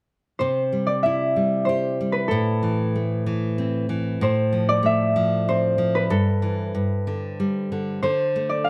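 In a gentle three-beat sway, this tender, sleepy children's lullaby pairs a ringing, thumb-plucked concert harp carrying the melody with a fingerpicked classical nylon-string guitar on fresh strings as accompaniment, both up front from 0.4 s to 8.7 s over chords that move from C through Am and F/A to Emadd11/G, Gsus2 and a final D5, all captured with close, detailed microphones and light reverb in a short passage cut from a longer piece.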